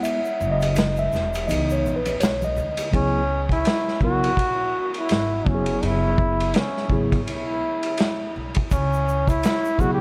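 Soaked in a dreamy, cavernous reverb, this nocturnal, cool jazz-hop excerpt at 83 BPM in C# dorian swings over a punchy, dark-cymbaled vintage drum kit and a woody, growly pizzicato upright bass, while a mellow tine electric piano carries the F#9sus4 and C#m7 chords, a ringing egg shaker and congas sit in the background before returning at 8.7 seconds, and a clear, up-front trombone with light vibrato and analog delay takes the jazz-style lead from 3.0 seconds.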